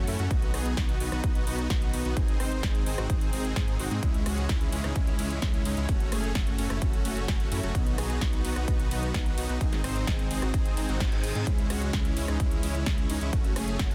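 Festival progressive house at 129 BPM in C# minor, euphoric and powerful, with a huge, airy supersaw riff carrying dub echo over a menacing detuned saw bass and a lush chorused pad in the background, all three pumping with the sidechain through a cycle of B, G#, C#m and F#m. A big-room kit of punchy snare, metallic hats, ride and rim clicks in a small room comes in at 0.1 seconds, joined at 0.3 seconds by a punchy, up-front electronic kick. A reverse cymbal rises in the background at 10.9 seconds, and the dense, heavily limited master keeps this cut from a longer piece loud and forceful.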